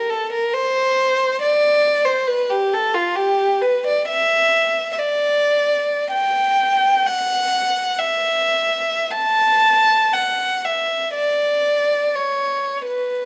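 A single violin carries this lonely, yearning classical fragment, sounding rich and intimate as it plays alone from 0.0 to 13.3 s. The bow has an airy quality, drawn sul tasto with a soft attack and light vibrato, and the line moves between F4 and A5. The pace is free and expressive, a rubato 3/4 that drifts between 37 and 70 BPM, tuned to A4 = 441 Hz. Close, detailed microphones place the player up front, while a moderate recital-hall reverb of about 1.5 s lends a gentle halo around each note. The passage is cut from a longer piece, leaving the sense of a private thought caught mid-phrase.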